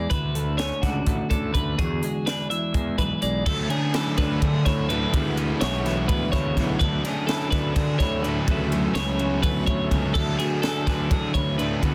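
Math rock with a midwest emo streak, this bright, intricate excerpt moves at 251 BPM in 7/8 with a straight feel, centred on D lydian. Two clean, twangy twelve-string electric guitars open together: one picks chordal accompaniment bathed in spring reverb, while the other, set further back, spins high arpeggios, their jangle carrying the opening Dmaj9 and E9 harmony. A growly, fuzz-soaked fingered bass anchors the low end alongside a crisp fusion kit that sits up front, with a high-tuned snare, punchy kick, bright cymbals and a pumping small-room sound. At 3.5 seconds a double-tracked, overdriven semi-hollow guitar joins with a forward riff as the progression cycles through Dmaj9#11, Esus2 and F#m7. The mix is dense and heavily limited, with light reverb overall.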